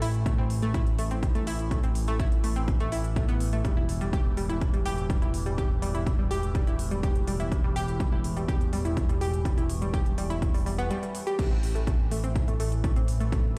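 An overdriven, heavy electronic kick enters up front at 0.3 seconds in this melancholic, driving melodic techno excerpt, landing on an overdriven techno kit with smooth hi-hats and crash cymbal, a fat, tube-saturated sawtooth bass, bright wave-folded analog pluck arpeggios with chorus and dub echo, and a nasal drone with moving overtones in the background. These parts all sound from the very start, and all pump against the kick except the drums, through stone room reverb as if played on a big sound system in a bare room, with a short break at 10.9 seconds.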